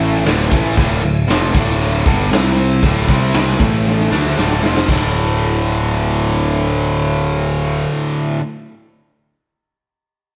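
A heavy, menacing hard rock excerpt in D minor at 117 BPM opens with a bright, double-tracked overdriven guitar riff, a fuzzy picked bass and a huge, punchy arena drum kit all up front in a stone room, with a drum fill from 3.9 to 4.9 seconds before the drums stop at 5.8 seconds and the bass at 7.8 seconds, while the guitar plays on to 8.4 seconds.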